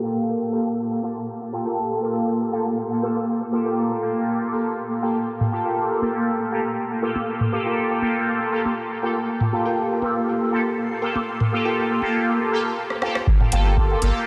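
A lightly swung 120 BPM groove in G minor shapes this hazy, deep dub techno excerpt, where a cloudy, granular pad sustains a Gm9 chord while a juicy, resonant polysynth stabs over it, filter sweeps moving through both, each pumping against the sidechain, with the polysynth bright and up front through chorus, phaser and dub echo. A very quiet, crisp wavetable chord stab riffs from 1.7 seconds, and tape-warm electronic toms join at 5.4 seconds with their own pumping and dub echo. A drum fill from the deep house kit, with dark, filtered hi-hat and rim click, arrives at 12.9 seconds just before a deep analog kick and a round, soft sub bass land at 13.3 seconds, all bathed in a lush, dreamy hall reverb.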